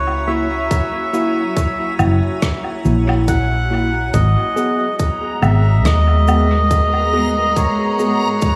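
Ambient dub at 70 BPM in G# minor with a gentle 16th-note swing, this meditative, hazy excerpt sets an up-front reedy, breathy melodica tune with dub echo over a blurred, detuned granular cloud pad, a round hollow-body fingered electric bass, echoed stabs from a mellow tine electric piano, a tight tape-warmed electronic kick, background cabasa, woodblock and rim click with a rolled-off top, and a reversed, swelling triangle texture that enters at 5.2 seconds, all moving from F#7 to G#m7 in an echo-heavy studio mix.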